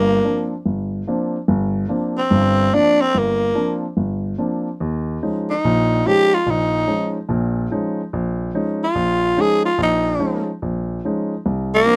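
Closely miked and detailed with almost dry acoustics, this short cut from a longer jazz piece swings at 144 BPM in C phrygian, carrying a searching, intense mood. A growling tenor saxophone sits up front and solos from 0.0 to 11.5 seconds, its breathy, raspy tone softened by gentle attacks, while a warm grand piano accompanies over suspended harmony that moves from C9sus4 to Eb9sus4 at 4.8 seconds and returns to C9sus4 at 11.5 seconds.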